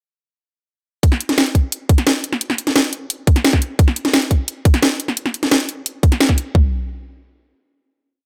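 A tight, overdriven kick drum and floor tom layer leads this short, tense, dark drum and bass piece, sitting up front with a broken-beat feel at 174 BPM in a straight 4/4. Alongside it, a second electronic kit layer brings a cracking snare and bright closed hi-hats, also overdriven and placed close, giving the playing a tight, technical edge. Both drum layers arrive together at 1.0 seconds and drive a single drop, the kick and toms sounding slightly louder than the snare and hats. A final hit begins at 6.5 seconds, and within it the hats and snare stop at 6.4 seconds and the kick and toms follow at 6.6 seconds, with the hit carrying the piece to its close at 7.9 seconds. The sound is dry and produced, with very little reverb, so the layered electronic drums feel punchy and immediate.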